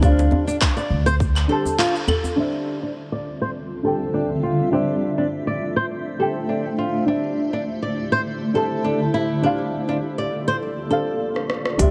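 This hypnotic, earthy organic downtempo excerpt at 102 BPM opens on a dark, pumping chord stab and fingerpicked flamenco guitar arpeggios over woody pizzicato upright bass, a tight electronic kick and a crisp electronic kit of hi-hat, shaker, claves, handclaps and rim click, joined at 0.2 seconds by a dry, deep djembe; the bass and drums fall away by 2.4 seconds as a filter sweep colours the guitar, a blurred, evolving granular cloud pad enters at 3.2 seconds, and a drum fill at 11.3 seconds rounds things off, all within a huge ambient reverb.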